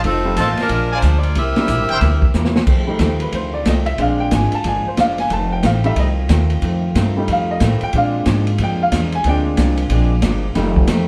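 A hollow-body archtop guitar comps cleanly in the background as woody pizzicato upright bass and a smooth vintage drum kit with a punchy kick launch an energetic big band swing at 183 BPM in F major, where an edgy, tight saxophone section carries the melody against present, warm trumpet stabs and piano accompaniment, and then, after a drum fill at 2.4 s, a clear, open grand piano with deep bass takes a solo from 2.7 s over very quiet, close-miked trombone chords, all in a wet studio reverb.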